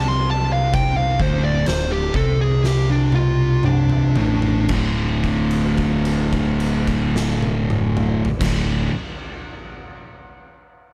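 A dark, up-front fuzz lead guitar solos through the opening of this ominous, sludgy stoner and doom metal fragment in D minor, its straight 4/4 pulse crawling at 55-68 BPM and slowing down until the lead drops out at 4.7 seconds. Beneath it, a double-tracked, picked fuzz guitar grinds out a low riff alongside a growly, overdriven fingered bass, while an oversized low-tuned kit enters at 0.7 seconds with a punchy kick, fat snare, toms and dark crash cymbals in a bright, pumping stone room, playing a fill from 2.6 seconds until the solo ends. A held note then hangs until 8.4 seconds, all in a dry, warm, dark production.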